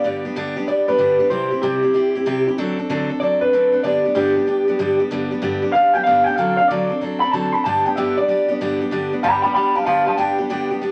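A bright, twangy electric guitar, slightly broken up through a small old amp, opens this rollicking, retro rock excerpt at once, carrying the melody between G4 and B5 up front. Beneath it, a picked steel-string acoustic guitar with fresh strings and a full-bodied dreadnought tone supplies the accompaniment from G2 to A4, sitting lower in level than the lead. The tempo is a brisk 189 BPM in 4/4 with a swung eighth-note feel, and the harmony stays in G major, moving through G, C and D7 before returning home to G. Both guitars play throughout, with the clean electric solo running from 0.0 to 10.9 seconds as the short section repeats near 8.9 seconds. A moderate large-studio reverb gives the pair a roomy, lively sound, and the clip is cut from a longer piece.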